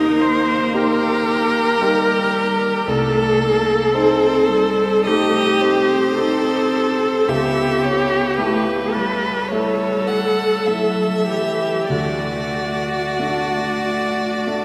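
Elegiac and solemn, this slow romantic piano quartet excerpt moves at 46-57 BPM in a rubato 4/4. A clear, smooth violin carries the melody over a rich, focused cello second line, while an expressive viola with vibrato and portamento sits up front in the accompaniment beside an intimate baby grand piano whose action noise is audible, the quartet set in a long, wet cathedral reverb as the harmony passes from Eb through Adim/C and A7/C# to D.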